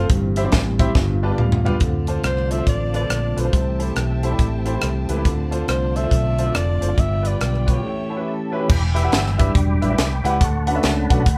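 A clear, intimate grand piano, a mellow flute-like tonewheel organ turning through a slow rotary speaker and a dark, round fingered electric bass open this soulful, hopeful uptempo gospel excerpt at 140 BPM with a swung feel, joined by a crisp fusion drum kit with a high-tuned snare; a lush bowed string section enters in the background at 1.8 seconds, a soft-attacked alto saxophone with jazz-style vibrato carries the melody from 2.3 seconds, and after a brief break the organ takes a solo from 8.7 seconds in a moderately reverberant room sound.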